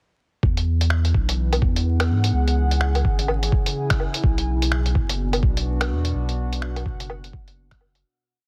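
Future garage at 126 BPM in B dorian, wistful and nocturnal, swinging its sixteenths across a brief piece that rides a single groove from 0.4 seconds before fading out from 5.5 seconds. A muffled, thumpy electronic kick sits up front in a two-step pattern, joined by a lo-fi sampler-style kit of closed hi-hat, low woodblock and finger snaps that skitters in a shuffled beat, its pitched-down, tape-soaked tone giving the drums a dusty character. Underneath, a deep, round sine sub bass carries a dub-style line, pumping against the kick. Entering at 1.1 seconds, a warbling, detuned pad of sawtooth and triangle layers drifts through mellow chords from E7 to C#m to Bm, its slow attack, chorus and built-in reverb lending a nostalgic haze as it too breathes with sidechain pumping. The mix is dry overall yet dense and heavily limited, with vinyl crackle laid over the whole.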